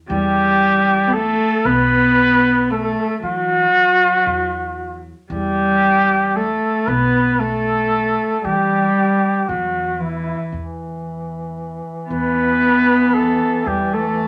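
A breathy, vintage-toned trumpet carries a longing, soulful Turkish melody in a straight 10/8, with vibrato and scooped notes, joined by an up-front bowed cello with a dark, reedy gut-string tone playing a second line and a woody, thumpy pizzicato upright bass underneath. At 10.6 seconds a mellow duduk slips in with a soft, sustained drone shaded by vibrato, deepening the folk color. The three melodic voices sit in a wet studio reverb in this short excerpt cut from a longer piece.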